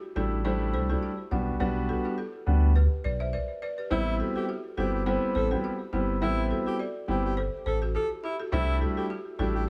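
A mellow, hypnotic afrobeats groove at 104 BPM in 4/4 opens at 0.2 s with a concert grand piano, a balafon and a sub bass entering together, the sixteenths carrying a light swing in A dorian. The piano sits up front with a warm, open tone and long sustain, playing accompaniment over C6 and Em7/B, while the bass beneath it is deep and full, sine-like with a fast attack and an added octave. The balafon repeats a woody, buzzing riff struck with rubber mallets, close and dry at its source, though a tape echo trails behind it. At 3.9 s, as the harmony moves to Am7, a breathy alto saxophone enters with a whispered, intimate solo melody in a pop style, also carrying tape echo, before the chords return to C6 near the close. A small room ambience surrounds the ensemble in this short section cut from a longer piece.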